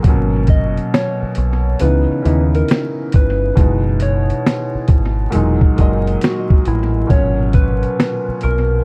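A gritty, sampler-style soul drum kit with a thumpy kick and fat snare sits up front in this melancholic, hazy lo-fi hip hop excerpt at 68 BPM in G# minor, swung on the sixteenths. Beneath it, a deep, round, punchy dub bass enters at 0.1 seconds, while a felt-muted upright piano, soft and intimate with audible action noise and a cassette-tape, echoed tone, carries chords from G#m11 through C#m9, F#13sus4 and Emaj9#11. From 0.5 seconds a gentle, warbling FM synth lead with chorus and tape echo adds a keys-like melody, all set in an echo-heavy mix dusted with vinyl crackle.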